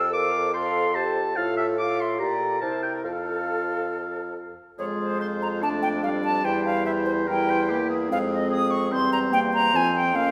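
A quick, graceful and cheerful classical-period movement for wind quintet, played with a rubato feel, in which an airy, bright concert flute with expressive vibrato carries the melody from 0.1 s. A clear yet distant oboe sings the second line above the clarinet and mellow French horn accompaniment, while a warm, present bassoon with light vibrato holds the bass. A moderate concert-hall reverb surrounds the ensemble, and at 4.8 s the harmony turns toward minor chords for a second section before this portion of a longer piece ends.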